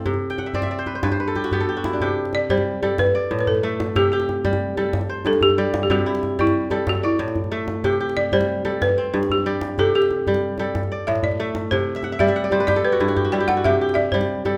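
A ringing, crisp kora opens this joyful West African traditional excerpt, its fingerpicked arpeggios sitting up front and running into a fill almost at once, while a medium-tuned djembe supplies percussion at a lower level. At 2.3 seconds a woody, buzzing balafon struck with hard rubber mallets takes up a smooth, dark solo melody in C lydian, moving at 124 BPM in a straight 12/8. The kora adds another fill at 12.0 seconds, and the parts sit in a moderate recital hall reverb.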